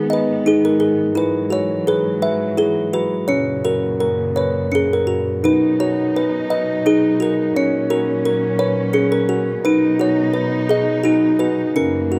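A delicate, tinkling music box carries the melody up front, its bright plucked notes giving this sleepy, innocent lullaby in a gently rubato three-beat lilt its childlike charm. Beneath it, a bowed string section holds dark, woody chords with a soft attack and light vibrato, moving from G#m through Eadd9 and F# to settle on B. Close, detailed microphones capture both parts within a moderate recital-hall reverb, and the passage is cut from a longer piece.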